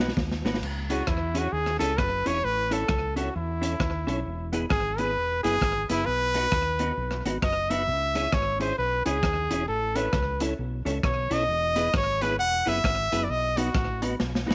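A short drum fill on a crunchy breakbeat kit, gritty and saturated with slapback echo, opens this energetic, mischievous ska excerpt in C# minor at 132 BPM with a swung feel. A clear, close-miked trumpet with light vibrato takes the melody up front from 0.9 seconds, over a round, punchy fingered electric bass, a dark, clean hollow-body jazz guitar in the background, and mellow tonewheel organ stabs colored by chorus vibrato and a fast rotary speaker. The chords cycle through C#m, A, E and B in a small, lightly reverberant room, and a second drum fill arrives at 14.2 seconds.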